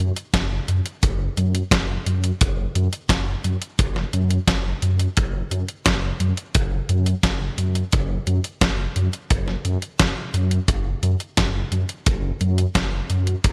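Synthwave at 87 BPM in 4/4 with a romantic, dreamy mood: a dark, rumbling detuned saw bass with sidechain pumping opens the clip and stays up front, joined at 0.2 s by a tape-tinged 8-bit digital drum machine playing hi-hat and a medium-tuned snare and at 0.3 s by a punchy, big-room acoustic kick, all set in studio reverb with bright 1980s-style digital production.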